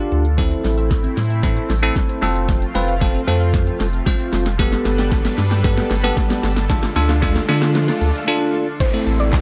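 A bright, bell-like tine electric piano carries the accompaniment in this bittersweet yet confident dance-pop excerpt, its phaser-tinged chords pumping against a deep sine sub bass and a knocking, fat-snared electronic kit with crisp hats, handclaps and shaker, all caught in a dry, gritty recording. Beneath them sit a shimmering, detuned pulse-width pad and a very quiet, lush unison pluck tracing arpeggios through a build-up that runs to 8.8 seconds and a drum fill that ends at 8.3 seconds. A faint riser and downlifter enters at 2.2 seconds, and a soft, round, chorused pluck melody appears at 8.8 seconds as the chords return to A minor.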